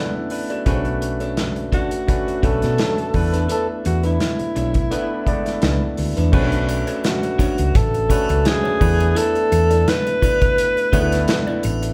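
Lush 1970s-style soul in B minor at 85 BPM, this smooth, cinematic excerpt moves with a gentle 16th-note swing, its harmony rocking between E7sus4 and Bm9. A barky, lightly overdriven tine electric piano carries the accompaniment through a combo amp from the start, while a slightly broken-up, picked electric guitar through a small old amp plays a compressed riff in the background. An acoustic studio drum kit with a tight kick, medium-tuned snare, hi-hat and crash sits up front with a dark, rolled-off top, and a round, punchy hollow-body short-scale bass enters at 0.7 seconds, fingered and amped. At 1.7 seconds a mellow alto saxophone takes the solo melody in a jazz style, up front with vibrato, scooped notes and a smooth top. A shimmering, close triangle joins in the background at 6.3 seconds as the second section begins, and the whole band plays live in one room under a moderate large studio reverb.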